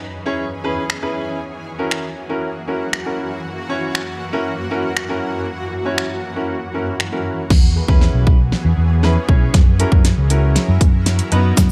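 Upbeat, euphoric dance-pop at 118 BPM, cut from a longer piece, where a shimmering, detuned ambient pad with chorus, reverb and sidechain pumping holds sustained chords over E6 and F#7 harmony, joined at 0.3 s by a baby grand piano with long sustain and at 0.9 s by an up-front pop drum kit with punchy kick, fat snare, metallic hats, snaps and crash, whose kick drops out from 5.5 to 7.5 s before a build-up with a drum fill and filter sweep brings in a round, amped fingered electric bass at 7.5 s, while a grainy tube shaker sits briefly in the background at the very end in a digital ambience.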